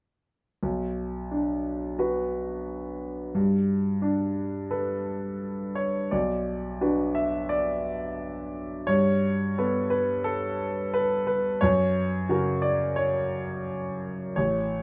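Loose rubato timing stretches and relaxes the 4/4 pulse, giving this classical fragment, cut from a longer piece, an unhurried, breathing feel. A bright grand piano carries everything as an accompaniment part, sitting up front with a vintage, brilliant character and a long sustain that lets each chord ring. Its range reaches from deep bass notes up into the middle register, circling between B minor and G add9 with a longing, melancholic cast. The opening phrase gives way to a second passage at 6.1 seconds, which restates that same pairing before turning to F sharp at 11.6 seconds and leaving the harmony unresolved. A moderate small room reverb surrounds the instrument, keeping the sound intimate and smooth.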